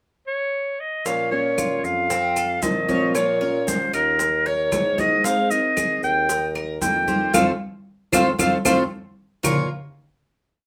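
A moderate studio reverb surrounds this short, complete piece of Cuban son and guajira, with the clarinet sitting up front. In Bb harmonic minor at 114 BPM in a straight 4/4, the mood is sultry and danceable. A breathy, subtone clarinet with vintage vibrato opens alone in a pickup bar, and the band enters at 1.1 s as it spins song-like motifs in a jazz style. A dark, punchy bassoon plays a tumbao bass that anticipates the chords, while a picked steel-string acoustic guitar with old strings strums a woody accompaniment with muted slaps, and a metallic Cuban tres with doubled strings runs an arpeggiated guajeo. Ringing congas with slaps and open strokes sound distant, tight high-tuned bongos keep very quiet steady eighths with a hand bell, grainy maracas shake, and claves join at 1.6 s with a two-bar time line in the background. The chords move from Bbm through F, Ebm, Abadd9 and Eb, and after a band accent and a drum fill the piece settles on a final Bbm chord at 9.4 s.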